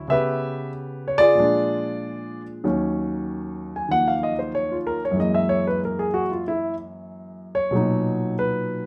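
An intimate, up-front, natural-sounding grand piano with audible action noise opens this moody, swinging fragment of a longer solo jazz piece in Eb minor at 94 BPM, moving from C#m7b5 and A#7 into a solo passage from 2.6 seconds over Ebm7, Gb9 and Bmaj7, all set in a studio with moderate reverb.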